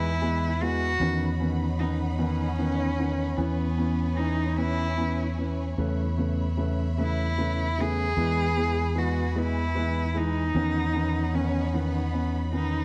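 A dark, warm production with light reverb and a small-room ambience frames this heartfelt, swaying pop excerpt in E major, moving in a slow 6/8 at 50 BPM. Up front, a single bowed cello carries the melody with a nasal, focused vibrato, while a felt-muted upright piano accompanies with a mellow, boxy tone and audible action noise. A lush, clear studio string section sustains chords from Badd9/E through C#m7/E and Aadd9/E, and a punchy, amped fingered electric bass anchors everything on a low E.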